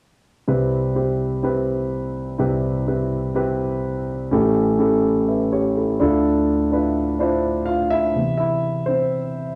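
A lightly swung 125 BPM pop groove in 4/4 and C major carries this hopeful, anthemic fragment, where a dark, mellow concert grand piano sits up front with deep bass and cassette-tape color, moving through Cmaj7, A7 and Dmadd9 in a moderate studio reverb before playing alone from 8.2 to 9.6 seconds as the harmony returns to Cmaj7.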